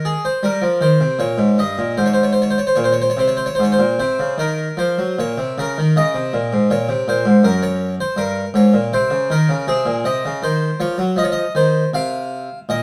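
The rhythm flows freely in a rubato four-beat metre, giving this short passage from a longer baroque-style suite movement a serene, radiant character. A solo harpsichord in the French style carries the whole piece, its plucked tone full and rich from two sets of strings, and it is recorded close and up front so every note feels dry and present. A moderate stone-room reverb adds a gentle sense of space around the instrument. The opening phrase settles on Eb and Ab harmonies before a second section begins at 5.2 seconds on Gb. That section passes through rootless Eb7/G and Bbm11 colourings and comes to rest on an open F5 sonority near 11.1 seconds. The playing ranges from the low Gb2 up to F5, filling out a calm, serene sound.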